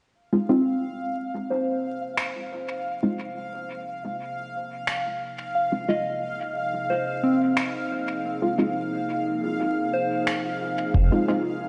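A straight 4/4 pulse at 89 BPM is marked by muffled, compressed electronic finger snaps that sit up front from 2.2 seconds, trailed by dub echo. This short cut from a longer ambient dub piece rests on a single Fm7 chord in F minor, and the mood is meditative and hazy. A detuned, warbling tape-like pad fades in with slow, nostalgic sustained chords, coloured by chorus, phaser and its own reverb. Muted filtered dub chord stabs with a cassette-tape grain and dub echo sweep through their filter, while a pure, gentle FM synth bell plays mellow, decaying arpeggios that also sweep and echo. Meanwhile a bright, resonant stepped-filter texture bubbles with random filter steps. Near the close, at 10.9 seconds, a deep, round sub bass with tube saturation and a very quiet, thumpy kick drum arrive briefly, all within a wet concert-hall reverb and a veil of vinyl crackle.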